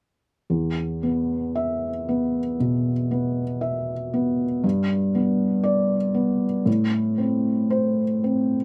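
A dark, mellow felt-muted upright piano with audible action noise and a slapback echo plays solo and up front in this intimate, melancholic neoclassical minimalist fragment, moving at a rubato 58 BPM in 4/4 with tuning at A4 = 436 Hz, spanning E2 to E5 as it opens on a high E5 at 0.5 seconds, shifts to G at 4.6 seconds and settles on A minor at 6.7 seconds, all captured dry outdoors with little reverb.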